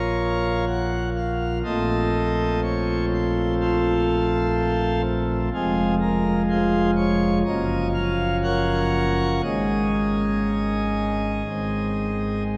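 A pipe organ's principal chorus carries this classical chorale-style passage alone, its full, romantic voicing set up front and spanning from F1 to Gb5. The mood is reverent and serene, moving at a stately 61 BPM in a straight 4/4. The harmony opens on B-flat minor, then passes through F7 over a B-flat bass, F minor and a G-flat major seventh before settling on an A-flat suspended fourth that resolves to A-flat at 11.5 seconds. A cathedral reverb with a long 4.5-second decay wraps the organ in a deep, resonant space, and the production leans dark and warm. The passage lasts about 12.6 seconds and is cut from a longer piece.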